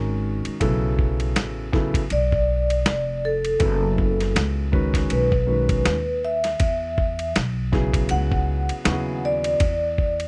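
Mellow and nocturnal, this short jazz-hop excerpt sets a dark, intimate grand piano with audible action noise against a growly pizzicato upright bass and a gritty, compressed sampler-style drum kit with a thumpy kick, while a ringing soft-mallet vibraphone with motor vibrato takes the melody from 2.1 seconds in a dry, close 1970s-style studio sound, moving through chords such as Bm7, F#m7 and Emaj9.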